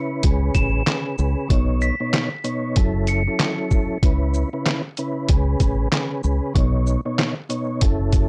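A mellow, flute-like tonewheel organ with chorus vibrato and key click opens this tough, swung boom-bap hip-hop excerpt, and a compressed, pitched-down sampler-style drum kit with a thumpy kick, medium-tuned snare, handclaps, hi-hat and shaker, roughened by 12-bit grit, enters moments later alongside a round, dark fingered electric bass over Amaj7, Badd9, F#m7 and C#m7 chords, while a bell-like glockenspiel played with soft plastic mallets rings out an airy melody only until 3.4 seconds, all in a dry, raw hardware recording.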